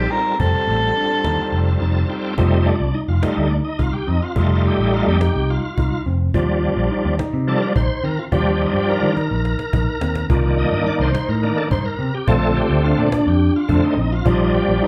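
Bright and driving, this progressive instrumental in 7/8 opens with a clear soprano saxophone melody, classical in style with light vibrato, that lasts only until 1.8 s. A full, shouting tonewheel organ with overdrive, chorus vibrato and fast rotary speaker then takes a solo from 2.4 s over a barky, gritty tine electric piano playing phased arpeggios and an amped, up-front picked electric bass. A woody cajon with faint snares sits in the background and adds a fill at 9.2 s, all captured as a band playing live in one room with a wet, large studio reverb.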